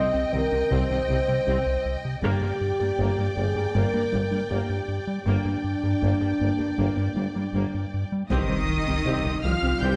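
Cinematic hybrid orchestral and electronic film score in C minor at 79 BPM, relentless and vast, cut from a longer piece: lush, distant violins carry a high melody over a second violin line and background violas, dark French horns hold sustained chords, a round, deep analog bass drives a riff beneath a very quiet, warbling lo-fi pluck arpeggio, while a very quiet clear cello section, a vintage-toned tuba and double basses anchor the low end, all in a wet scoring-stage reverb, and at 8.3 seconds a huge, bright impact and very quiet trombone chords arrive as the harmony moves from Gm back to Cm.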